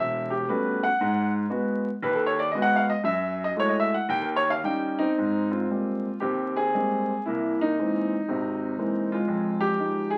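A solo jazz concert grand piano, up front with deep bass, open tone and long sustain, swings with rubato through rich extended chords in a warm mood, heard through a small room's reverb and the crackle of a very old 78 rpm record, this short excerpt moving into a new section at 5.2 seconds.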